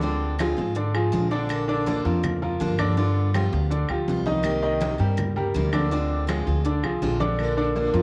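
A straight 4/4 Cuban son and guajira groove at 163 BPM carries this nostalgic, sultry Latin passage, with a dark, growly pizzicato upright bass and a brilliant, long-sustaining bright grand piano playing arpeggios up front, a picked steel-string acoustic guitar adding accompaniment, the piano and guitar both colored by cassette tape, ringing soft-handed congas and woody claves (entering at 0.4 s) sitting in the background, and a moderate spring reverb lending the home cassette recording its roomy air over chords moving from Dm7b5 through Bb, G7 and Cm7.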